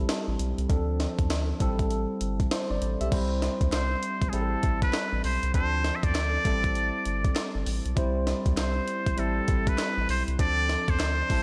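A lush hall reverb and a big arena sound frame this punchy, confident new jack swing cut, taken from a longer piece and sitting in A minor at 99 BPM with a 16th-note swing feel. A bell-like tine electric piano opens the track with a clean, direct accompaniment through analog chorus and slapback echo, moving among Am7, Dm7 and C, while a gritty, pitched-up breakbeat kit of thumpy kick, high-tuned snare, hi-hat and crash sits compressed and up front. A round analog bass enters almost at once, deep and dark with a fast attack and sustained tones. At 3.7 seconds a straight-muted trumpet takes the solo melody, nasal and present with jazz-style vibrato, joined by a crisp, vintage group handclap kept very quiet in the background. The chords move to C around 3.1 seconds, opening a new section that carries the groove forward.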